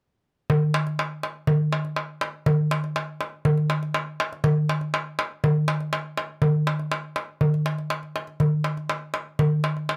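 A crisp, up-front metal-shell darbuka carries this short cut from a longer Greek folk piece, its small, high voice struck with hard hands and given a compressed, saturated edge. The feel is straight and driving in two, intense from its entry at 0.5 seconds through to the close at 10.0 seconds. The drum sits in a wet studio ambience with a short tail.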